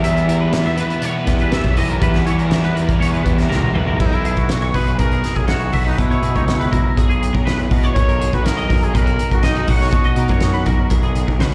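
Heard live through a venue's PA with recital-hall reverb, this intricate, bright math rock and midwest emo excerpt layers a compressed twelve-string electric guitar with warbly pitch drift in the background, a twangy, chorused guitar playing arpeggios with slapback echo, a growly fuzz bass up front and a loose indie drum kit with punchy kick, fat snare and dark cymbals, while a biting, double-tracked overdriven riff stops at a drum fill ending at 4.0 seconds, where a present, punchy solo trumpet with slapback echo and digital delay takes the melody until 10.6 seconds.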